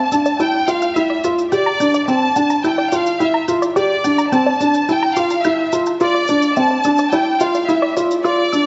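A melancholic, intimate piano and strings electronica excerpt in D minor at 107 BPM opens with a rich chamber violin section carrying the bowed melody with vibrato up front, while a lush, detuned sawtooth unison pluck spins arpeggios in the background through vintage 12-bit sampler grit and a filter sweep, over a very quiet, round sine sub bass. From 0.1 seconds, a soft, felt-muted upright piano plays a mellow, dark riff up front and a layered electronic shaker sits far back, with tape echo on the violins, pluck and piano and a wet echo chamber reverb over the whole mix. The passage works as a build-up across its 8.7 seconds, moving from Dmadd9 to Gm and back to Dmadd9.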